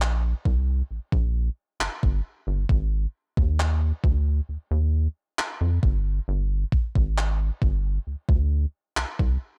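A rubbery, hollow square-wave bass with a resonant filter pluck sits up front from the very start, spanning G1 to F2 with a bouncy, sustained tone. Beside it, a gated 80s digital drum machine lays down a thumpy kick and handclaps, its sampler-style sound tape-tinged and soaked in gated reverb. This tender, smooth contemporary R&B break moves at a slow 67 BPM in 4/4, its dark, warm production otherwise dry across the short 9.6-second cut from a longer piece.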